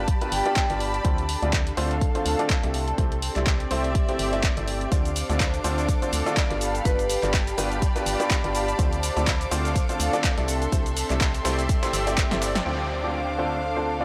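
Bittersweet and energetic, this piano house excerpt moves at 124 BPM in D dorian with a swung sixteenth-note feel, cycling through G7, Dm7 and C6 chords. A hollow, organ-like FM bass with a fast, decaying attack sits low beneath a lush, smooth string section, both pumping against a punchy, up-front electronic kick. The clear upright piano carries the riff with a woody, intimate tone and audible action noise, while a tape-warm analog drum machine adds filtered crash, handclaps, hi-hat, shaker and a punchy snare. A ringing vibraphone with hard mallets drifts in briefly behind the mix through tape echo, and from 4.9 seconds an earthy violin section holds sustained chords in the background alongside a very quiet, gritty sampler-style kit of hi-hat and snare. A drum fill and band accent lead into a short closing section at 12.7 seconds, where a downlifter sweeps in over a dry, gritty hardware sound with transformer saturation and light reverb.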